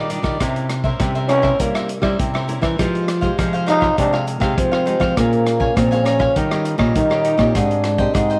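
This bittersweet, lively samba-choro fragment opens on crisp, bright picked cavaquinho accompaniment alongside two fingerpicked nylon-string guitars, one adding accompaniment and the other carrying the bass line. A lo-fi vintage drum kit joins at 0.1 seconds, its muffled, rolled-off hi-hat, tight kick and rim clicks sounding as if caught in a small room. At 1.3 seconds a growling trombone enters up front with a raspy, gritty, soft-attacked jazz tone and takes the lead as a solo in its lower-middle register. The harmony moves through rich extended chords, from C7b9 through Fm9, Bbm9 and Eb9 before settling on Abmaj9. A moderate echo-chamber reverb and studio ambience give the whole a vintage, warm glow, and the piece is cut from a longer performance.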